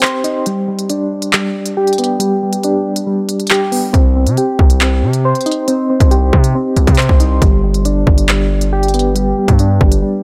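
A soft, round electric-piano-like synth opens the clip with gentle arpeggios, coloured by chorus, tremolo, tape echo and a low-pass filter sweep that runs through its whole length, while a drill drum kit of hard-clipped kick, crisp hi-hats and handclaps plays alongside it from the start. This tense, cold hip hop piece moves at 138 BPM in 4/4 with a half-time feel, and the opening break carries the keys and drums over a G chord. At 3.9 seconds a distorted, saturated 808-style bass enters with a heavy, aggressive tone and a noise layer, as the harmony shifts to C minor before returning to G at 7.4 seconds. The keys stay mellow and up front against the crisp, tape-tinged drums and the bass's fast attack and decay. The dry mix keeps every part close and present in this short portion of a longer track.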